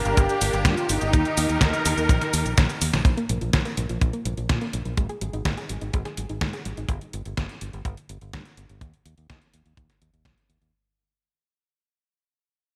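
A straight 4/4 italo disco groove of tight, up-front acoustic kick, a detuned 8-bit drum machine playing cabasa, hi-hat and gated-reverb snare, and a punchy, foam-muted fingered electric bass carries this sunny, romantic excerpt, which opens with a dark, chorused synth brass melody over rich, vibrato-laden studio strings before a drum fill near 2.6 s gives way at 3.1 s to soft, round pluck arpeggios and a long fade-out, the whole piece set in a lush hall and bright 1980s-style digital production.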